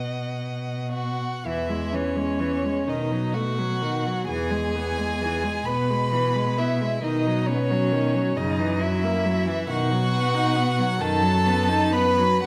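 Up front and close, a single bowed cello carries the bass line with a rich, vibrato-laden tone in this lyrical classical string quartet movement, cut from a longer work. Above it, one violin sings a smooth melody in its upper register while a second violin, equally even in tone, shapes a supporting line beneath. At 1.5 seconds a viola joins with accompaniment that sounds more distant, filling out the middle of the texture. The playing moves in 6/8 with rubato, and the harmony drifts from E to B7 and later to F#7 before settling on B. A recital hall's reverb, lasting 1.4 seconds, gives the whole quartet a warm glow.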